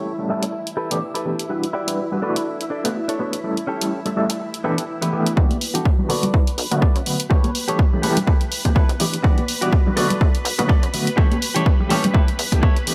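A gritty, barky overdriven electric piano with fast tremolo and phaser opens this nostalgic, sensual filtered disco house cut at 124 BPM in B minor, joined at once by a lush, chorused string machine and a bright, clean picked guitar riff, all filtered and pumping over looping A7, G69, Em9 and Bm7 chords, while an electronic hi-hat enters at 0.4 seconds and a punchy up-front kick, a very quiet plucky analog bass and soft-handed shaker and congas arrive at 5.4 seconds as a filter sweep builds under a plate reverb and bright 1980s-style digital sheen.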